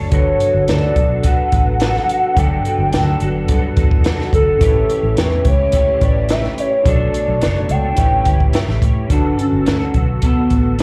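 Indie pop with a bedroom-pop haze, this laid-back 107 BPM fragment in G lydian drifts over Gmaj9, A7 and Bm9 chords while a hollow, woody clarinet-like synth lead carries the melody with soft vibrato, subtle chorus and slapback echo. Beneath it, a compact cocktail kit with a punchy kick and high-tuned snare sits up front, a dark, round, foam-muted fingered bass anchors the low end, and a lo-fi, slightly broken-up guitar through a small old amp wobbles with warbly pitch drift alongside a barky, gritty tine electric piano pulsing with tremolo and cassette-tape colour. A very quiet, flute-like pad holds mellow sustained chords until 9.1 s, and the whole performance comes across as a live gig heard through a club PA with light reverb.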